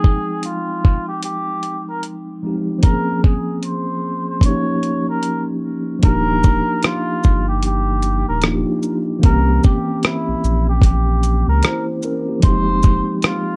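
A light reverb and cassette-tape grit color this dreamy, nostalgic lo-fi hip hop excerpt, cut from a longer piece and swung in 4/4. A veiled, cup-muted trumpet sings a jazz-style solo melody with vibrato from a distance, over a mellow tine electric piano heard up front through its built-in speakers and a gritty, compressed sampler-style kit of hi-hat, thumpy kick, rim click and shaker. At 6.0 seconds a thick, saturated sub bass enters under the move to Ebmaj7 and holds until 13.0 seconds.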